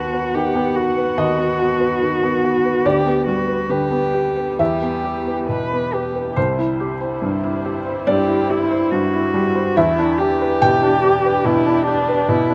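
Neoclassical piano and strings in E minor at a rubato 71 BPM, this longing, melancholic fragment of a longer piece sets a felt-muted upright piano, soft and intimate with a thin felt tone, up front as accompaniment, while a single muted cello carries a veiled, bowed second line with vibrato and portamento. Behind them, a muted chamber string section holds dark, con sordino chords with soft attacks, all three parts playing from 0.0 to 12.5 seconds over a harmony moving from B/D# through G/D and Em to C and Em7. Light small-room reverb gives the whole a rough home-demo intimacy.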